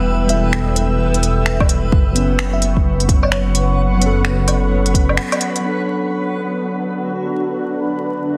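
A swung groove of finger snaps, smooth hi-hat and woodblock from an up-front organic electronic kit, joined by a layered deep electronic kick from 1.6 s, drives this rainy, wistful future garage excerpt, where muted, felt-like synth keys with chorus and dub echo pump beside a blurred granular cloud pad and a rumbling detuned saw bass, while a bell-like FM electric piano melody sparkles in the background next to a reversed, swelling texture, and after a brief break at 5.2 s a filter sweep moves across the pad on a Bm7 chord, the whole bathed in lush hall reverb and vinyl crackle.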